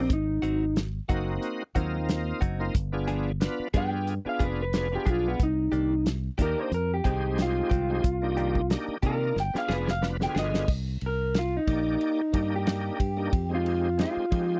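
Soul blues with a smoky, mournful feel, where a slightly broken-up, lo-fi guitar through a small old amp carries the melody over a shouting tonewheel organ with slow rotary, overdrive and chorus vibrato, a round fingered bass, a fat-snared soul drum kit that plays a fill from 9.4 to 10.7 seconds, and phaser-tinged clean guitar stabs that stop at 10.6 seconds, all in a dry, close 1970s-style studio sound.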